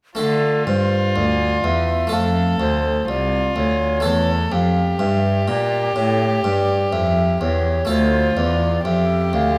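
At 0.2 seconds a baroque flute, violin, harpsichord and cello begin together in a grave, introspective baroque-style sonata movement with continuo, set in D minor at a slow 62 BPM in a straight 4/4 and tuned to A4 = 443 Hz. The close-miked wooden flute carries the melody between A4 and F5 with an airy, expressive tone, crisp attacks and vibrato. Just beneath it, a single violinist bows a second line with a nasal, gut-string period sound, while one cellist bows the bass with a reedy, up-front presence. The harpsichord supplies the accompaniment with a round, plucked Italian-style voice on one set of strings, as the harmony moves from D minor through F and A over E before returning to D minor. A moderate recital hall reverb surrounds the ensemble, and the passage, cut from a longer piece, runs to 9.6 seconds.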